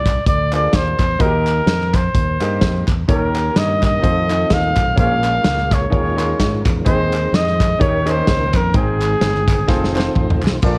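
This short cut from a longer piece sounds like worn, warbling old cassette tape, with a warbly pitch drift and light reverb over an uptempo, jubilant gospel groove at 127 BPM in 4/4 with a swung eighth-note feel. Up front, a warm trumpet carries the melody in a jazz style, with vibrato, scooped notes and a smooth top, its line given a slapback echo. A modern studio drum kit drives the band with bright cymbals, a medium-tuned snare and a punchy kick, while a fingered electric bass adds a punchy, amped low end and a crisp, compressed group handclap sits in the background. A clear baby grand piano comps intimately from 0.5 seconds, its action noise audible, and a clean tonewheel organ joins at 3.1 seconds with sustained chords through a slow rotary speaker and chorus vibrato. The hopeful harmony moves from Bb7 through Eb7, F7, Bbm7 and Abmaj7, and a drum fill at 9.7 seconds rounds out the section.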